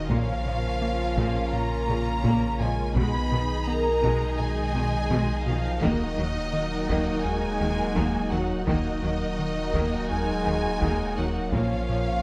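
A brooding, tense stretch of hybrid orchestral and electronic film score in Eb minor at 84 BPM opens with a distant, lush violin section carrying the melody over a soft-attack second violin line with portamento, a smooth viola accompaniment, a hollow, flute-like pad with chorus and a mellow, vintage French horn section holding sustained chords, all resting on a deep, clean sine sub bass. From 0.1 seconds a rubbery, nasal square bass riff with a filter pluck, a background cello section and a very quiet taiko ensemble struck with heavy sticks join in, while the chords move from Bbm through Abm/Cb to a long Ebm before returning to Bbm at 11.5 seconds. The sound is close and detailed with light reverb, and this fragment is cut from a longer piece.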